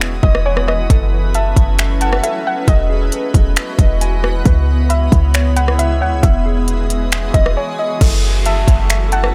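A half-time trap groove at 135 BPM in 4/4, with a hard-clipped kick, crisp hi-hats, finger snaps, rim clicks and crash up front alongside a deep, boomy, sine-toned 808 bass, drives this spacious, hazy cloud-rap cut in F# dorian, where a soft, round, dark pluck carries the melody through chorus and delay, a shimmering, ethereal pad pumps with sidechain beneath it, a clean, fingered electric guitar plays filtered arpeggios in the background, a glassy texture of drifting overtones floats in reverb, and an electronic downlifter enters at 8.0 s as the chords return to F#m7.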